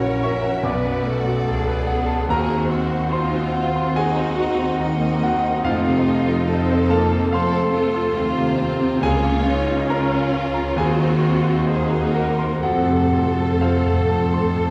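Brooding and tragic, this classical passage, cut from a longer piece, moves in a flexible rubato. An intimate concert grand piano carries the melody up front, polished and present, with deep bass and audible action noise. Behind it, a lush violin section also carries the melody while a second violin line and an expressive, distant viola section fill in the harmony with vibrato. A focused cello section and a biting, intense double bass section anchor the low end, their bowed tone full of vibrato. Timpani played with hard mallets enter at 5.6 s and return with a fill at 12.6 s, all set in a reverberant concert hall heard from further back in the room.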